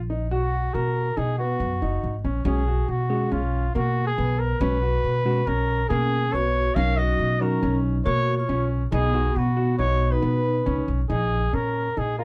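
A bright, intricate progressive instrumental moves in a straight 5/4 pulse, heard here as a short cut from a longer piece with a dry, close 1970s-style studio sound touched by light reverb. A woody, thumpy upright bass sits up front from the very start, plucked pizzicato on steel strings, while a clear concert grand piano with a smooth, vintage character spins arpeggios in its middle register. A mellow trumpet enters at 0.3 seconds to carry the solo melody in a classical style, its light vibrato and roomy, distant tone still placed prominently forward. At 2.5 seconds a clean tine electric piano, heard through a combo amp, adds accompaniment as the harmony shifts from B toward C#sus4/B and D#m7/B. A vibraphone struck with medium hard mallets slips in at 5.9 seconds with a metallic, ringing second line and medium motor vibrato, staying in the background before the passage settles on A#m7 near its close.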